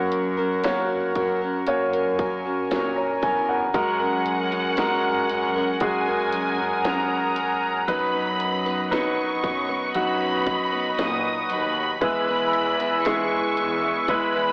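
In a straight, unhurried 4/4, this heartfelt, hopeful pop ballad comes across as a short cut from a longer piece. A clear, intimate grand piano sits up front with audible action noise and a slapback echo, carrying the accompaniment. Alongside it, an accordion holds sweet, dark sustained chords with light tremolo tuning, and a full-bodied dreadnought steel-string guitar picks arpeggios in the background, also touched by slapback echo. A chamber cello section supplies a smooth, gut-string bass line in period style, while an electronic, layered house drum kit, with a punchy kick, cracking snare and hi-hat, joins at 0.1 s and carries a tape-warm character from being re-recorded in a small room. At 3.8 s a lush, distant studio violin section adds an intense second line with vibrato. The whole is bathed in a wet scoring-stage reverb that gives a big arena sound, oddly paired with an AM radio tint.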